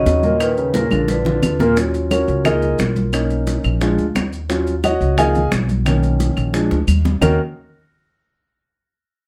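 A ringing, metallic vibraphone carries a short melody at the start of this fiery, sophisticated Afro-Cuban jazz excerpt, with a bright, distant trombone playing a second line beneath it, while a concert grand piano and pizzicato upright bass accompany from the first moment. Both vibraphone and trombone drop out by 1.6 seconds, and at 1.8 seconds the piano, deep in the bass and up front, takes over with a solo that runs to 7.2 seconds. After a minor-ninth opening, the solo moves through a cycling progression of minor seventh, six-nine, major seventh and dominant seventh chords. The woody, steel-strung bass sits close and prominent underneath, anchoring the harmony. A percussion bed of round, low-tuned bongos played with hard hands, thick-skinned, damped congas, grainy, vintage-sounding maracas and saturated claves keeps a straight four-beat drive, with the congas and claves sitting in the background. 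A moderate club reverb gives the whole band the feel of a small live room, and the fragment ends as the harmony returns to the minor seventh chord at 7.2 seconds.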